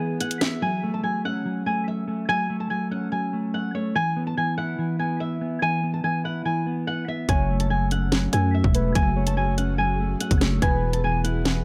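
A fingerpicked flamenco guitar leads this cold, menacing half-time drill excerpt, its fresh-stringed acoustic tone sitting up front and softened by a low-pass filter and analog delay. Beneath it, a dark, clean electric guitar plays fingered accompaniment through analog chorus, filtering and delay, moving between F#madd9 and E. At 7.3 seconds the track hardens: a produced electronic drum kit returns with a hard-clipped kick, sharp snare and bright hats, joined by a growling, buzzy 808-style bass with a fast attack and decaying notes, both placed up front. A round, octave-layered synth lead with chorus and vibrato returns at the same moment as a soft second line in the background. An ethereal, airy pad with ensemble chorus and long release drifts back in at 8.3 seconds. An echo-heavy digital ambience wraps the whole mix.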